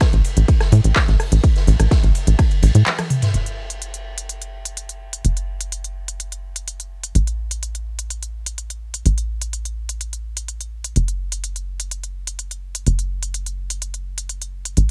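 Driving and cinematic, this melodic techno excerpt moves at 126 BPM in 4/4 with a straight feel in F# minor. A heavy, layered electronic kick sits up front until 2.5 seconds, while a raw garage drum kit adds saturated, gritty hi-hat, ride and a medium-tuned snare in a bright, pumping stone room, its top rolled off, with its cymbals and hats pumping against the sidechain. That acoustic kit drops out at 3.3 seconds, after a short break and drum fill starting at 2.9 seconds. Throughout, a produced techno kit of handclaps, smooth hats, rim clicks and toms helps carry the groove. Underneath, a tight, punchy sequencer bass ranging from F#1 to A2 blends sawtooth and square waves into a mellow filter pluck with a fast attack and a decaying tail, sitting up front and pumping to the sidechain. The home cassette recording is dry, with little reverb.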